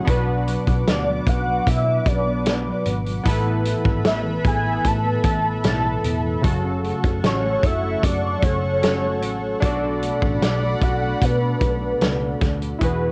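A hazy, wistful stretch of bedroom-flavored indie pop opens on a clean, fingered electric guitar tucked in the background, its lush chorus and wavering pitch drift soaked in cassette tape grain. Beside it, round, detuned sawtooth keys with a filter sweep and chorus share the accompaniment, while a smooth, slow-attack pad holds bright sustained chords higher up. At 0.1 s a foam-muted, amped electric bass and a loose acoustic drum kit arrive; the kit sits up front, saturated and gritty with a rolled-off top, a tight kick and a medium-tuned snare. A nostalgic lead enters at 0.9 s, blending triangle, square and sawtooth tones with a sub octave, vibrato and ensemble chorus for a mellow, warbling melody. Over the light reverb of a home cassette recording, the harmony moves through Bm, Asus2, F#m and Bm7 in this short excerpt.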